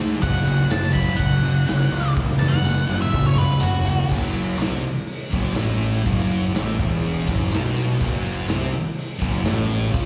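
An octave-fuzz lead guitar, dark and distorted with slapback echo, tears through a solo from 0.2 to 4.1 seconds over a thick, double-tracked fuzz guitar riff, growly overdriven picked bass, a punchy up-front garage drum kit that plays a fill from 2.2 seconds, and a jingly close tambourine in this raw, menacing 124 BPM garage rock excerpt in F# minor, heard live through a venue PA with recital hall reverb.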